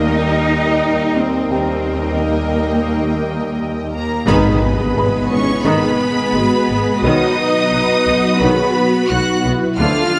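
A straight 4/4 pulse drives this tense, futuristic cut from a hybrid orchestral and electronic film score, where a clear, focused violin section carries the high melody over a second violin line, background violas, a silky, detuned analog string pad with ensemble chorus, distant trombones, lush bowed cellos alongside bowed double basses in the bass, and a soft, felt-muted upright piano that stops at 7.1 seconds, while mellow French horns and an electronic impact arrive together at 4.3 seconds, set in a moderate scoring-stage reverb.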